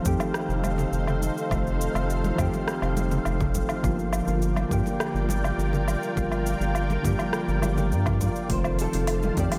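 A straight, relaxed deep house groove of a punchy, overdriven electronic kick with metallic hi-hats, cabasa, rim click and woodblock, plus very quiet soft-handed congas, carries this smooth sunset chillout excerpt, where a round, up-front analog bass and mellow chorused electric-piano-like synth keys sit under a silky vintage string machine in a dreamy, reverb-soaked hall, and a dark, thumb-plucked nylon-string guitar joins with a brief melody at 8.5 s.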